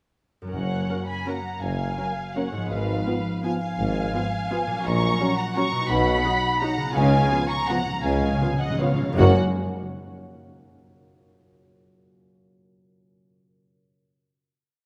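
This is a short, complete orchestral ballroom waltz in 3/4 with a rubato feel, festive and sweeping in mood. A concert harp opens at 0.4 s with ringing rolled-chord arpeggios in the background. Muted violins carry the veiled, con sordino melody with vibrato and a soft attack, while a second, lusher violin line doubles the tune in thirds and at the octave. Muted violas and a mellow French horn section fill in after-beat and sustained chords. Underneath, muted cellos play the bass on the beats, doubled by darkly bowed double basses and a roomy solo tuba, while timpani with soft mallets and calf heads add round single strokes on the bass notes and a fill from 7.0 s. A moderate scoring-stage reverb gives the ensemble depth as it settles onto its final chord at 9.2 s.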